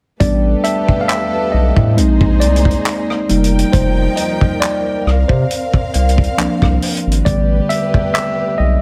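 A mellow, slightly out-of-tune tine electric piano takes the lead in this late-night, longing contemporary R&B excerpt, opening at 0.2 s over lush, woody bowed strings with vibrato, a thick, saturated sine sub bass and a tight, mid-forward soul kit of kick drum, hi-hat, rim click and handclaps, while a very quiet, bell-like celesta adds delicate, boxy sparkle from 0.6 s to 7.0 s over drifting suspended ninth chords.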